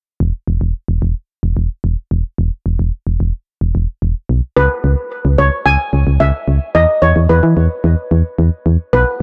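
The steel pan carries the melody from 4.6 seconds, its metallic, shimmering lead struck with medium rubber sticks and sitting up front, trailed by a delay. Beneath it, a solid FM bass runs through the whole short excerpt from 0.2 seconds, punchy and round with a fast attack and decaying, digital notes placed close in the mix. This synth-pop fragment, cut from a longer piece, feels wistful and nostalgic in a straight 4/4. In the opening passage the bass plays alone over an E5 chord before the pan arrives with a move to C#m7, returning to E5 at 6.7 seconds. Light studio reverb and a dark, warm production shape the recording.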